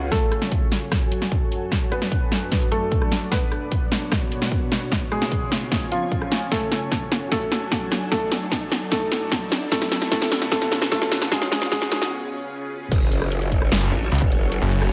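A muted, intimate felt piano with dub echo carries the melody over a morphing wavetable pad and an ethereal airy pad in the background, while a faint swell and riser, punchy layered kick and a big-room kit with metallic hats build this chaotic, aggressive heavy wobble dubstep excerpt at 150 BPM half-time in F# harmonic minor through F#madd9, D/F#, Bm and C#, until a break at 12.1 seconds gives way to a drop at 12.9 seconds where a growling, wobbling bass and then a snarling, distorted saw bass hit hard on F#m.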